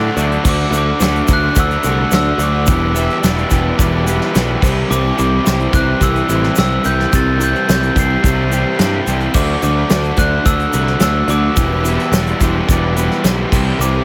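A bright, growly picked electric bass anchors this upbeat, jangly indie rock excerpt at 108 BPM in D mixolydian, joined by a crunchy overdriven guitar with chorus and tape echo, a raw garage guitar with spring reverb in the background, a soft brush drum kit, a grainy egg shaker, a ringing bell-like glockenspiel melody with plate reverb and tape echo entering at 0.5 seconds, and a raspy growling trumpet that plays a background second line until 4.8 seconds and returns at 11.9 seconds over chords moving from Dadd9 through Em7 to C.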